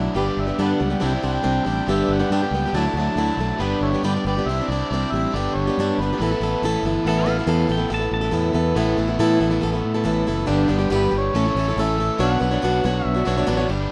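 This rough home demo carries light reverb, with a boxy, picked acoustic guitar and a dark, round electric bass sitting up front. It is an open-road, nostalgic rock excerpt at 139 BPM in a straight 4/4, moving through G, Cadd9 and Dadd9 before turning toward Asus2, A and Bmadd9 later on. The plugged-in acoustic plays a swing-style accompaniment, while a bright, double-tracked overdriven electric guitar riffs in the background and a tonewheel organ holds very quiet sustained chords through a slow rotary speaker with key click. An amplified, gritty harmonica carries the melody from 0.2 s with light vibrato, punchy tongue slaps and a digital delay. It drops out before 7.1 s, when a twangy, compressed pedal steel guitar takes a brief second line with slide and volume swells. The harmonica returns at 10.9 s for the closing stretch.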